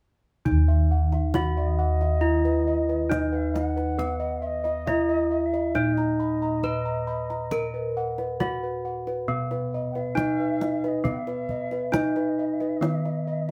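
A bright, ringing bronze metallophone struck with a horn mallet carries the melody up front in this shimmering, hypnotic Javanese gamelan passage in 4/4, over mellow, padded bossed gongs holding the bass and a tight, dry kendang. A second set of close-miked bossed gongs adds full, round arpeggios from 0.7 seconds, and a distant bamboo bansuri enters at 1.6 seconds with a pure, expressive second line of tongued notes and vibrato. The band plays live in one room with moderate studio reverb, and the passage is cut from a longer piece.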